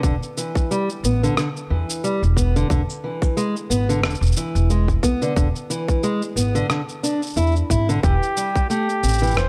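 Folktronica excerpt in E minor at 90 BPM with a light 16th-note swing, wistful and autumnal, where a dark, boxy fingerpicked parlour guitar with finger squeak plays arpeggios through a low-pass filter and digital delay over a woody, growly pizzicato upright bass, a tight overdriven electronic kick that stops at 8.7 s, and a muffled, pitched-down shaker and rim click, before a vintage-toned flugelhorn with vibrato and scooped notes enters at 8.0 s as the chords move from Em7 through E7 to A7(no3)/E.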